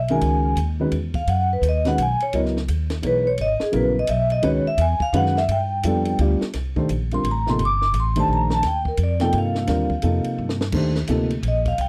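A metallic, ringing vibraphone with fast motor vibrato solos up front over pizzicato upright bass from the start of this hypnotic, searching modal jazz waltz at 171 BPM in swung 3/4, joined by a dark, boxy, slightly detuned upright piano and a compact cocktail kit with dark cymbals, a high-tuned snare and punchy kick, settling into C dorian at 6.5 s and marked by a brief drum fill at 10.4 s, all captured in a dry, close 1970s-style studio sound.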